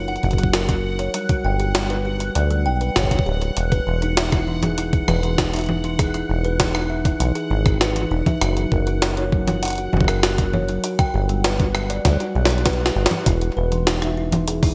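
Wistful and playful, this 99 BPM IDM piece, cut from a longer work, sets a woody, ringing kalimba's delayed arpeggios over a rubbery, saturated acid bass with a resonant filter sweep, while a bubbling, detuned stepped-filter texture shimmers with chorus and reverb until 13.3 seconds; a gritty, pitched-up jungle sampler-style kit of congas, hi-hat, rim click and a high-tuned snare with gated reverb rides up front beside a thumpy, tape-warm electronic kick, with a drum fill from 12.1 seconds, as the harmony drifts through Gmaj7 and Eadd9 in a bright 1980s-style digital production.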